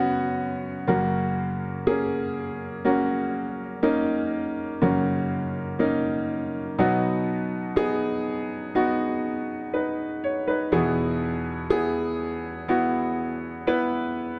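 Pop piece at a slow 61 BPM in straight 4/4, emotional and tender, carried entirely by a solo concert grand piano that sits up front with a clear, open tone, deep bass and short sustain, spanning E2 to C#5. The harmony moves from F#sus4 resolving to F#, then to B at 6.8 seconds and E at 10.7 seconds, tuned to A4 = 441 Hz. A moderate plate reverb and a dark production frame this short passage taken from a longer work.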